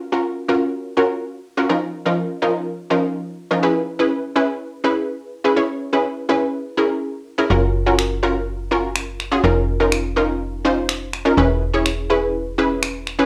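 Dance-pop in an upbeat, carefree mood, cut from a longer piece, opens with a lush, detuned unison pluck carrying the chords up front, lightly chorused and tinted by cassette tape. At 7.5 seconds a snappy FM bass with a metallic attack joins, and at 8.0 seconds overdriven, layered electronic finger snaps arrive close in the mix. The whole sits in a wet studio reverb with the hazy character of a home cassette recording, cycling through Gbmaj7, Db69/F and E6.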